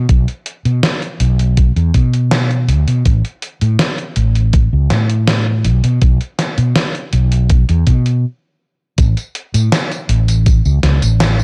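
A dreamy, faded vaporwave excerpt, cut from a longer piece, in a straight 4/4 feel with a dry, gritty cassette-tape character. A dark, round, amped fretless electric bass sits up front, joined by a thumpy, sampler-style electronic kick and a tape-warm 80s digital drum machine of hi-hat, tambourine and a gated-reverb snare, both drum parts re-recorded in a small room. Everything halts for a brief stop from 8.2 to 9.0 seconds before a new section begins at 9.0 seconds, with the kick dropping out at 10.6 seconds.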